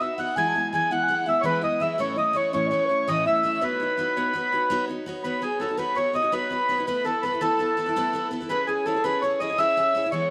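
Lively and bright, this short passage from a longer Celtic folk piece is a slip jig in a straight 9/8 lilt. An up-front accordion carries the melody with a reedy, full, rich tone, its chambered voice sounding mellow. Behind it, a wooden baroque flute plays a second line that is pure and crisp in attack, with vibrato and rolled-off highs. A picked jumbo steel-string acoustic guitar supplies the accompaniment, bright and full-bodied with fresh strings and audible finger squeak, moving through E, A and Badd9 before turning to Asus2 and C#m. The tune passes into a new strain at 5.2 seconds, and the whole ensemble sits in a moderate echo-chamber reverb with a roughly 2.5-second tail.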